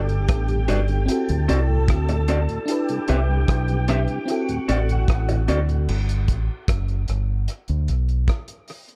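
Tender and romantic, this lovers rock reggae fragment moves at a relaxed 75 BPM in 4/4, with a round, deep fingered dub bass and a cloth-damped, thuddy drum kit sitting up front, a lush, dreamy FM electric piano with dub echo, a slightly broken-up lo-fi guitar adding stabs, a mellow tonewheel organ on slow rotary in the background, and a silky, phased string machine carrying a second line over Gmaj7, D7 and Cmaj7 chords, until from 5.9 s only bass and drums remain, the drums playing alone after 8.3 s in a dark, intimate small room.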